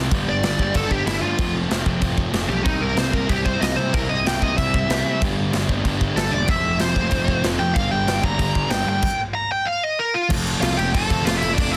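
Dry, dense and heavily limited, this rebellious, upbeat punk rock fragment puts a warm high-gain lead guitar up front, soloing from 0.3 s to 10.3 s over two sludgy, overdriven rhythm guitars and a fuzzy picked electric bass in the background, while a punchy big-room acoustic drum kit with bright crash cymbals and a soft-clipped snare drives the straight 4/4 feel as the chords cycle through G, F and C.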